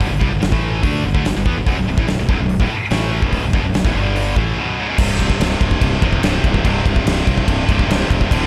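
A straight 144 BPM heavy metal pulse in 4/4 is driven by a big acoustic rock drum kit with a punchy kick, medium-tuned snare, hi-hat and crash, its sound dark and smooth with a rolled-off top, sitting up front in a big room. A bright, double-tracked high-gain guitar riff, picked and distorted, runs from B1 to D4 over a fuzzy, growly fingered bass with overdrive, moving through G5, Bm and B5 before shifting to C5 at 5.0 seconds. The mood is dark and heavy in a small room ambience, and this short cut from a longer piece runs about 8.5 seconds.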